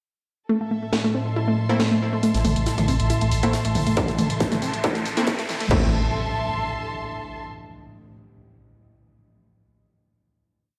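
Hypnotic, industrial peak-time techno at 138 BPM in A minor, where a warm, detuned analog pluck riff and distant, lush bowed strings open at 0.5 seconds, joined by an eerie, warbling FM drone at 0.8 seconds. A cracking programmed techno kit enters at 0.9 seconds and sparse echoing supersaw stabs at 1.7 seconds, then a thick saturated sub bass and a faint looped acoustic breakbeat join the filter-swept build. A riser and impact arrive at 3.9 seconds, the distorted, up-front four-on-the-floor kick lands at 4.0 seconds, and the strings ring on with the tail of the riser and impact through a final A minor chord in a stony, reverberant room.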